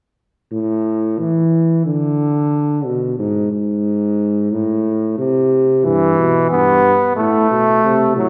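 A warm, roomy bass trombone opens this classical brass canzona at 0.5 s, its low line sounding distant yet up front as the harmony shifts and briefly passes through a chordless moment at 3.2 s. At 5.8 s a brilliant trombone joins above it, giving the imitative writing a contemplative but driving character. Both voices bloom in the lush reverb of a church or concert hall in this short excerpt cut from a longer piece.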